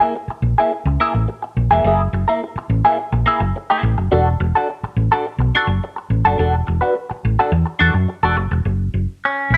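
Funk at 106 BPM in a straight 4/4, this playful excerpt sets a bright, twangy clean electric guitar with wah and subtle chorus over a round, punchy hollow-body short-scale fingered bass that joins at 0.3 s, both up front in light reverb as the harmony moves from F#9 to E9sus4 before landing on F#5.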